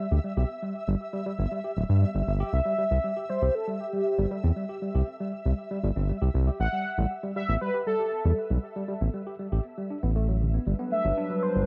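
A straight 4/4 pulse at 118 BPM drives this intricate, glitchy IDM passage, cut from a longer piece and captured as a home cassette recording with little room reverb. A worn, slightly out-of-tune tine electric piano spins filtered, delayed arpeggios over a deep, dark round analog bass up front, while a grainy, flickering granular texture sits high above. At 2.5 s a velvety, full-bodied synth lead with chorus, vibrato and delay takes the melody over C and A5 chords, and at 10.7 s the texture stops as a warbling, nostalgic tape-like pad enters on Gmaj7.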